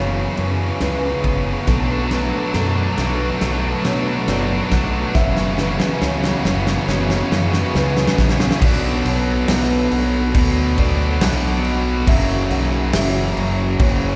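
A slow, straight 4/4 pulse at 69 BPM drives this melancholic, cathartic post-rock excerpt in B minor, with a big acoustic rock kit entering at 0.4 seconds, its punchy kick, medium-tuned snare and bright crash and ride cymbals carrying a dark, smooth, big-room sound, and a drum fill running through the build-up of the opening 8.6 seconds. A growling fingered electric bass, overdriven and punchy, anchors the low end while a tight, picked distorted guitar plays a riff throughout, joined at 1.7 seconds by a second distorted guitar riffing further back in the mix. Behind them, a compressed, twangy clean electric guitar picks arpeggios until 8.6 seconds, and a felt-muted upright piano adds intimate, boxy arpeggios with audible action noise. A hollow, flute-like pad with a slow attack and ensemble chorus sustains very quiet chords underneath. The harmony moves between F#7sus4 and Bm7, and the whole ensemble sits in the wet reverb of a church or concert hall, giving it a vast, cathedral-like bloom.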